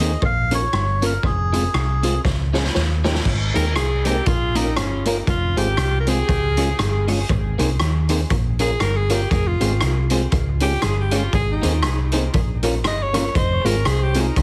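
Ska with a joyful, bouncy swing, this short cut from a longer piece opens with a reedy, nasal melodica carrying the tune for its first 2.2 seconds. A drum fill follows, and at 3.6 seconds a breathy alto saxophone takes over with an intimate, close-miked solo, its soft attack and whispered tone touched by dub echo. Underneath, a raw garage drum kit sits up front with a boomy kick, gritty saturation and a rolled-off top, its crash, hi-hat, rim click and snare also trailing dub echo. A dark, round hollow-body bass anchors the low end, while a slightly broken-up electric guitar with dub echo and a clean tonewheel organ with key click and a stopped rotary speaker add accompaniment and stabs from the background. The harmony cycles through minor and major chords, and the whole mix has light reverb and a heavily compressed, radio-like sound.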